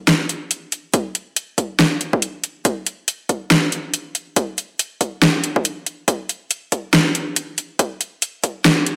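Dubstep in a dark, brooding half-time feel with a swung sixteenth lilt, this short excerpt from a longer piece is a build-up carried entirely by drums. An overdriven deep house drum kit with a fat snare and metallic hats sits up front from 0.1 seconds, joined at 0.9 seconds by a punchy, layered electronic kick drum, also overdriven and up front, which stops at 8.5 seconds. The dry, gritty hardware sound is set against a wet digital room reverb.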